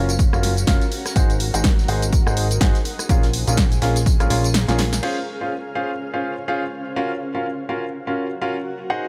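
A swung sixteenth-note groove in 4/4 drives this uplifting, euphoric piano house fragment, cut from a longer piece. An up-front, tape-warm electronic kick anchors the beat alongside a punchy analog drum machine playing crash, hi-hat, rim click, snare and tambourine, while a very quiet acoustic big-band kit adds natural hi-hat and snare. A plucky, funky analog bass with a fast attack and decaying filter pluck pumps against the kick through the Gbmaj7, Ab7 and Bbm7 changes. A clear, intimate, polished grand piano with audible action noise carries the riff through low-pass filtering, digital delay and sidechain pumping, as a bright, blurred granular pad drifts behind it with its own reverb. The kick drops out at 4.5 seconds, a short drum fill follows, and from 5.0 seconds the drums and bass fall away, leaving piano and pad to ring out over Dbmaj7 and Gbmaj7 in a lightly reverberant studio space.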